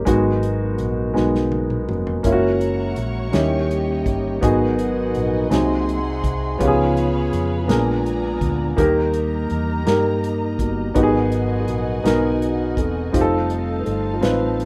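Slow gospel in 6/8 at 55 BPM, counted in dotted quarters, this fervent, solemn passage in G# minor is cut from a longer piece and moves from G#m7 through F#7 and D#7b9, later reaching C#7, A#7b9 and a held D# before closing on F7. A soft, flute-like tonewheel organ carries the solo throughout, its clean percussive attack softened by slow rotary speaker, chorus vibrato and plate reverb. Beneath it, an intimate concert grand piano sits up front with deep bass and audible action noise, while a round, amped hollow-body electric bass anchors the low end. The drum kit is dark and smooth, with a punchy kick and medium-tuned snare, and it plays a fill from 1.2 to 2.3 seconds. At 2.2 seconds a lush symphonic string section enters with bowed, vibrato-rich sustained chords set low in the mix. The whole has the rough feel of a home demo in a small room with moderate reverb.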